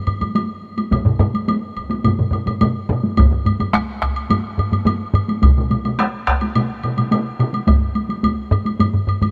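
Powerful and driving, this short cut from a longer Japanese traditional taiko piece moves in a straight 4/4 as several taiko groups struck with hard and heavy sticks, some vintage and band-limited, one close and dry, and another set in a small room, pound from the opening seconds, most of them up front, while a woody woodblock sounds beneath them and one taiko group drops out at 7.5 seconds, all under a light reverb.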